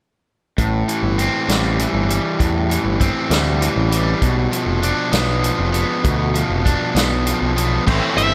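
At 0.6 seconds a bright, crunchy overdriven electric guitar riff opens this moody, bittersweet indie rock passage in A minor, joined at once by a growling, round picked bass with overdrive and an acoustic vintage drum kit. The pace is slow, at 66 BPM in a straight 6/8, with the harmony moving from Am7 to Bdim/F. The drums have a natural studio-room sound, with dark crash and hi-hat, a medium-tuned snare and a punchy kick, while the up-front crunchy guitar leads the mix. Near the end, at 7.9 seconds, a compressed, distorted fuzz guitar adds a second riff thickened by ensemble chorus. At 8.2 seconds a dark octave-fuzz lead guitar sounds a single high E5 up front, just as this short excerpt of a longer piece breaks off, and the whole recording stays dry with little reverb.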